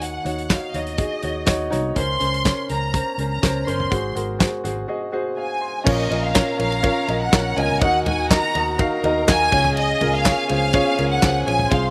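Hopeful and anthemic, this short piano-driven pop excerpt moves at 123 BPM in a straight 4/4 feel in Db major. A lush, expressive violin section carries the melody from the start, its bowed ensemble tone rich with vibrato and touched by slapback echo, while a clear, intimate grand piano accompanies with audible action noise and short sustain, adding a brief fill at 1.2 seconds. Underneath, a vintage muted fingered electric bass gives a round, punchy, foam-muted low end, and a loose indie drum kit sits up front with a fat snare, tight kick, dark cymbals, handclaps and toms. At 5.9 seconds a second violin line enters in the background, smooth and even, thickening the ensemble as the chords move from Bbm through Ebm to Db. The sound is dry, with little reverb and an open, roomless quality.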